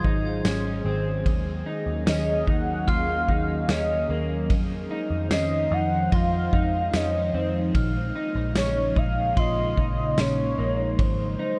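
From the first moment, this hazy, haunting dream pop excerpt sets a velvety, detuned synth lead melody with chorus and delay over an ethereal, airy pad of sustained chords, slightly broken-up electric guitar arpeggios with delay, a round, foam-muted picked bass, an up-front vintage drum kit of punchy kick, snare, tambourine and dark ride cymbal, and a sparkling glockenspiel ringing in the background, inside a light studio reverb.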